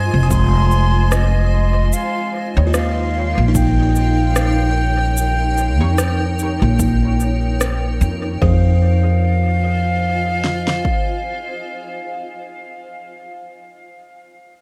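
A hazy, spacious ambient dub excerpt at 74 BPM in F minor, where a reedy concert flute carries the melody through tape echo over a blurred, evolving granular cloud pad and a buzzing kalimba's arpeggios, while a woody, up-front pizzicato upright bass and a punchy, overdriven deep house kit hold the swung groove, an electronic shaker and rim click drift in dub echo until 8.2 seconds, and a muted sawtooth chord stab with phaser enters at 2.6 seconds in the background.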